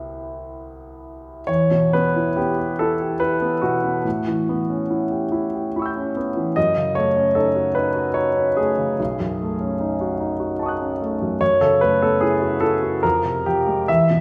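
A clear, intimate grand piano opens on a Cmaj7 chord and plays alone throughout this hazy, wistful impressionist classical fragment, which is cut from a longer piece and moves in a rubato three-time feel. After 1.5 seconds the harmony shifts to Em and drifts through colorful chords such as A13, F#m6 and B13 before settling on Fmadd9 near 13.0 seconds, with the playing spanning B1 to G6. The instrument sits up front with a polished tone, long sustain and audible action noise, surrounded by the wet reverb of a recital hall.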